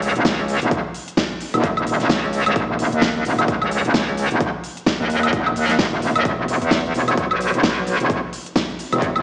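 Bouncy and gritty, this short bass house excerpt rides a swung sixteenth-note feel from start to finish. A metallic wobble bass sits up front, its aggressive FM tone saturated, compressed and bright, with chorus, overdrive and sidechain pumping giving it a fast-attack, sustained growl low in the register. A big-room dance drum kit, also up front, supplies crisp hats, a shaker, a woodblock and a huge snare, all layered with a tape-warm character. An electronic kick drum enters at 0.3 s with a punchy, layered thump that carries on almost to the end. The whole mix sounds like it is playing through a big sound system in a bare room, with light reverb, digital ambience and a large studio reverb, yet it also has a small-speaker quality.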